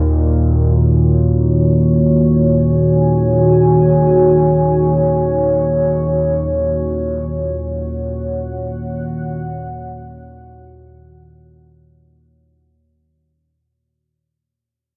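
In free time, this cavernous, desolate dark ambient drone excerpt sets a dark analog pad holding deep, moody sustained chords with chorus and phaser over a mellow, evolving sawtooth-and-pulse analog drone low in the register, both up front in a vast, echoing cathedral reverb on a Gb/Eb chord, before a fade-out from 3.6 to 13.4 seconds.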